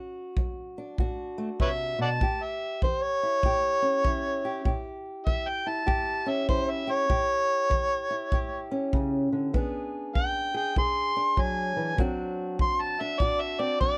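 An overdriven, amplified harmonica takes the lead from 1.6 seconds, its gritty tone shaped by vibrato, tongue slaps and scooped notes in a jazz-inflected solo that sits up front. This is soulful, laid-back acoustic country blues in A mixolydian, moving at 98 BPM in 4/4 with a gentle swing on the eighth notes. Underneath, an old ladder-braced acoustic guitar, fingerpicked from the very start, gives a dark, woody, boxy sound with the dull ring of aged strings. A punchy kick drum, heard in a small room with brushes, joins at 0.4 seconds. The chords move from D7 to A7, then to E7 at 9.5 seconds and back to D7, captured by close, detailed microphones with little reverb in this short cut from a longer piece.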